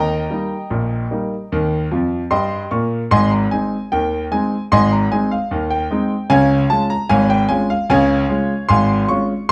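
Playful and cheerful, this short excerpt of ragtime piano moves at 75 BPM in a straight 2/4. A bright grand piano plays solo throughout, spanning a range from Ab1 up to Db6 and sitting up front in the mix with a brilliant yet worn, natural tone. The harmony moves from Eb to Ab at 3.1 seconds and on to Db at 6.3 seconds, with a piano fill arriving at 1.9 seconds. A moderate club reverb gives the room a modest sense of space around the instrument. The overall production leans dark and warm, framing the sparkle of the piano in a mellow setting.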